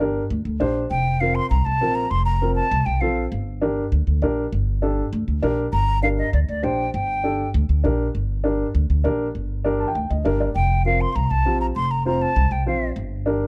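Cumbia with a danceable, driving feel, this short excerpt moves at 199 BPM in 4/4 with a straight pulse in G minor, cut from a longer piece. A dark, mellow upright piano carries the accompaniment throughout, its woody tone sitting up front beside a plucked upright bass whose steel strings give a woody, warm, acoustic low end. A hollow concert flute takes the melody in three short phrases, the first entering at 0.9 seconds, its airy tone, vibrato and crisp attack captured close. The harmony rocks between G minor and F suspended chords, and the piano adds a brief fill just before the flute's final phrase at 10.6 seconds. Light reverb and a dark, warm production keep the small ensemble intimate and cohesive.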